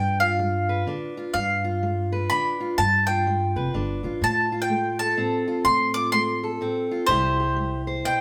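Acoustic folk in a lilting 3/4 at 125 BPM with a gentle swing, this peaceful, nostalgic excerpt in G mixolydian moves from G7 through F/A to C over about 8 seconds. A woody, up-front mandolin carries the melody in its picked double strings, supported by fingerpicked steel-string acoustic guitar and a dark, growly pizzicato upright bass that stops at 8.0 seconds. The trio plays live together in a stone room whose moderate reverb gives the small band a close, natural sense of space.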